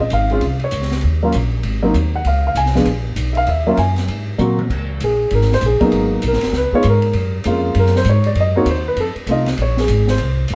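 A swinging jazz piano trio opens together: a mellow grand piano carries the melody over pizzicato upright bass and an open jazz drum kit, at a brisk 196 BPM in 4/4 with a moderate swing on the eighth notes. The piano sits up front, its natural, short-sustained tone moving through chords in Db major such as Bbm7, Dbmaj7 and Ab9. The bass is just as forward, woody and thumpy with the bite of steel strings, while the kit sits further back with dusky cymbals, a high-tuned snare and a boomy kick. A drum fill at 4.4 seconds leads into a piano solo from 4.7 seconds, which moves through Gbmaj7, Cdim and F7 toward Bb7. The trio plays live together in a moderate stone room whose reverb lends a sophisticated air to this short passage cut from a longer piece.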